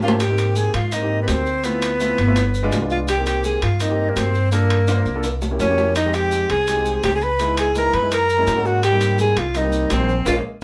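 An up-front alto saxophone carries the melody in a jazz style, its tone warm and touched with vibrato, giving this sunny, sophisticated Afro-Cuban jazz passage a confident lead voice. Above it, a breathy flute adds a second line with a straight tone, soft attack and lifted highs, played expressively. A concert grand piano supplies the accompaniment with a deep low end, moving through rich chords such as Abmaj9, G7b9 and Gb9. The plucked upright bass sits prominently, woody, growly and thumpy with steel-string bite, while ringing metal-shell timbales and grainy, mellow, compressed maracas drive the percussion in a straight 4/4 feel. The timbales play fills at the start and again from 4.9 to 6.0 seconds, and the band hits an accent together at 10.3 seconds as this cut from a longer piece closes, all captured live in one room with a moderate studio ambience.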